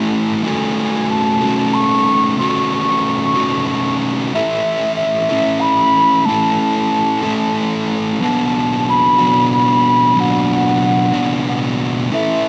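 The recording is soaked in a dreamy plate reverb that lends the whole short cut a soaring, cinematic glow. It is a rock piece in 3/4 at 92 BPM with a straight feel, tuned slightly below standard pitch at A4 = 436 Hz. A double-tracked electric fuzz guitar sits up front from the start, its picked, distorted riff ranging from B2 to A4 with a warm grit. At 0.5 seconds a clay alto ocarina enters with the melody between E5 and C#6, its pure, hollow straight tone carrying a crisp chiff on each attack while tape echo trails it from a distant place in the mix. Underneath, the harmony moves from F#m/A to A at 4.3 seconds and on to Bm at 8.2 seconds. The piece is cut from a longer work and ends at 12.5 seconds.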